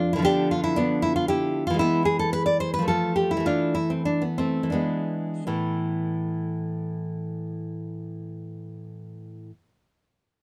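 The recording is dry and intimate, with close, detailed microphones placing a bright, full-bodied nylon-string guitar up front, where even a finger squeak can be heard. This grave, solemn classical piece is a baroque-style dance in 3/4, cut from a longer work and tuned to A4 = 439 Hz. The solo guitar is fingerpicked with a deep classical character, spanning F2 to D5 with a rubato feel that moves between 78 and 119 BPM. The opening phrase slows from 1.0 to 5.5 seconds as the harmony passes through Bdim/D, E, F, A5/E and E7. At 5.5 seconds a new passage begins on A5, and the guitar plays until 9.5 seconds.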